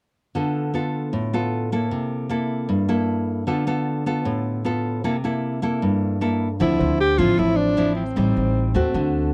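Bossa nova with a melancholic, smooth mood, opening on a full-bodied, fingerpicked nylon-string guitar alone, up front with audible finger squeak, as it alternates Dm6 and C6 chords. At 6.6 seconds the harmony moves to Dm9 and Am7b5 as a breathy alto saxophone enters up front with a jazz-style subtone solo, its vibrato and scooped notes carrying the melody. A woody, growly pizzicato upright bass joins alongside it, and at 6.8 seconds a clean, very quiet tine electric piano adds a high C5, all in a dry, close 1970s-style studio sound with light reverb.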